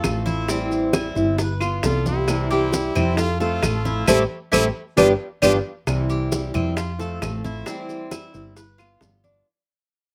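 A dark, thumb-plucked nylon-string guitar carries the melody from 1.9 to 5.6 seconds, shadowed by a brilliant, forceful trumpet second line with vibrato and slapback echo, in this danceable Cuban son and guajira cut from a longer piece. Underneath, a boxy parlour steel-string guitar fingerpicks the accompaniment with audible finger squeak and its own slapback echo, a metallic, double-strung Cuban tres plays arpeggios, and a round, hollow-sounding fretless bass sits up front. Soft-handed congas and tight, high-tuned bongos, vintage woody claves and grainy, distant maracas fill the background in a dry outdoor sound, with a band accent before the fade-out begins at 5.9 seconds.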